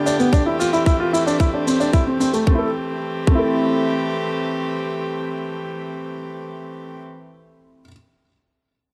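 Cinematic and hypnotic, this piano and strings electronica, cut from a longer piece, settles on a single Am7 chord. A woody upright piano carries the riff throughout, up front and intimate with audible action noise, its notes trailed by a digital delay. Beneath it a string quartet, one player per line, holds soft-attacked sul tasto chords that feel pure and floating, their sustained tone pumping under sidechain compression until they fall away at 7.0 seconds. An overdriven electronic kick sits tight and up front, entering just after a brushed shaker with a rolled-off top that plays briefly and stops at 2.4 seconds. The whole recording is set in a moderate echo chamber reverb with a small-room ambience.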